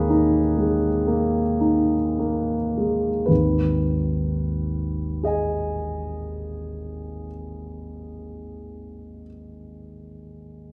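A wet recital hall reverb surrounds a concert grand piano placed up front, its tone warm and open with a deep bass. This is a short excerpt of impressionist classical solo piano in G# minor, tuned to A4 = 438 Hz and moving in a very slow, rubato 4/4 at roughly 25-32 BPM. The mood is nocturnal and wistful. The opening phrase rests on a G#madd9 chord and slows down through its first 3.3 seconds, then a second passage settles onto a plain G# minor chord until the piano stops at 10.7 seconds. Across the whole passage, the piano ranges from G#1 up to G#5.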